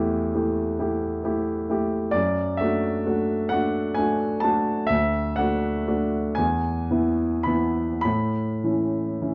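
Tender and nostalgic, this brief 9.3-second romantic nocturne fragment, cut from a longer piece, features a single grand piano, warm, polished and up front, unfolding in a rubato 12/8 lilt through a light reverb and a dark, mellow sound, moving from A7 through D/F# and D to E before settling on A.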